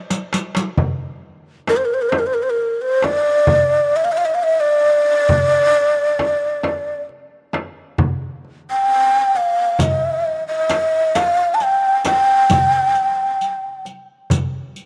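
A short drum fill on the crisp, metal-shelled darbuka and the dark-jingled riq opens this hypnotic, soulful excerpt of an Arabic maqam ensemble in 10/8, before a soft-handed, close frame drum joins at 0.8 seconds and a breathy low ney with a reedy chiff and unsteady vibrato carries the melody up front from 1.7 seconds, the riq returning at 9.8 seconds, in a light small-room reverb.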